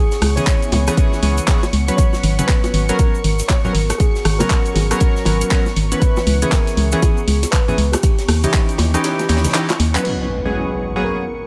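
Deep house with a late-night, hypnotic mood and a swung 4/4 groove, cut from a longer piece, where a mellow tine electric piano carries the melody through dub echo over a hollow, organ-like FM bass that pumps against an up-front, tape-warm electronic kick. Round, detuned analog keys stab with chorus and tape echo, while a silky analog string pad, a cloudy granular pad, grainy shaker, close bongos and congas, a dry cocktail kit and a layered house kit with handclaps, rim clicks and crash fill out the dry, intimate mix. The kick drops out at 9.0 seconds ahead of a drum fill, and an electronic impact lands at 10.1 seconds as the chords return to G#m11.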